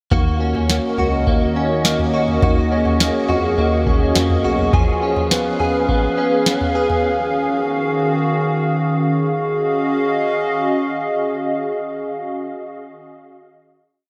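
Fingerpicked rolls on a bright, direct-recorded clean electric guitar with ensemble chorus and diffuse ambient delay open this hazy, ethereal dream pop piece alongside a round, chorused synth bass line that lasts until 4.7 seconds and a booming analog drum machine with a deep kick, crisp snare and slow tom pulse that lasts until 7.0 seconds. A hollow, flute-like pad with chorus soon enters to carry sustained chords, all washed in a huge ambient reverb, before the pad closes alone on a final chord at 9.3 seconds.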